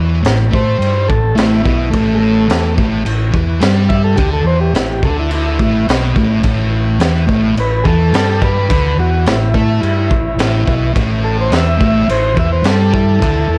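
The combo organ stands out, playing a reedy, vintage-toned solo from 0.5 seconds with light vibrato and a clean sound, ranging from G#3 to E5 over a rowdy, swaggering garage rock groove at 106 BPM in a straight 4/4. Beneath it, a thick fuzz guitar drives a double-tracked, picked riff between A2 and A3, distorted and up front, while an overdriven fingered electric bass adds a round, amped low end from A1 to A2. A crunchy breakbeat drum kit, recorded in a studio room, comes in at 0.2 seconds with a tight kick, a high-tuned snare and dark crash cymbals, its gritty, saturated sound rolled off at the top and placed up front. The whole band sits in light reverb over an A5 chord, and this clip is cut from a longer piece, running to 13.6 seconds.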